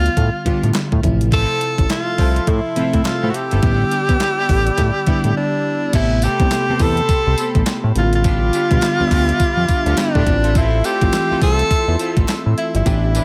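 A subtoned tenor saxophone with vibrato and a touch of delay carries the melody up front from the start, over a lush, chorused FM electric piano and a fat, saturated analog bass, with a thumpy 12-bit drum machine of kick, snare, hi-hat, handclaps, tambourine and crash joining almost at once in this confident, slick new jack swing cut from a longer R&B piece. Intense bowed string stabs sit in the background from 0.5 s, a smooth, detuned pad enters at 1.3 s, and a barely audible group handclap adds a hollow human touch, set in a digital ambience with swung sixteenths. After a brief break at 5.4 s, the harmony moves to a fresh chord sequence opening on Am9 for the rest of the excerpt.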